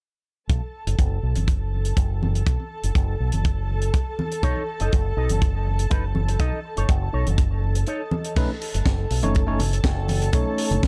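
A small-room, echo-heavy mix with light reverb sets a sunny, feel-good nu-disco groove at 122 BPM in B mixolydian, where a tight, up-front acoustic kick and a bright, envelope-filtered fingered bass pump under a distant, reedy string section holding dark, gut-toned chords with light vibrato over B7. A tight funk kit with a high-tuned snare, hi-hat and crash drives the groove alongside low-tuned, thick-skinned congas carrying tape echo, while a twangy, picked electric guitar with envelope filter and analog chorus plays a riff from 4.4 s. After a clean guitar fill and a brief break, a bell-like tine electric piano enters at 8.4 s on B9 in this excerpt from a longer piece.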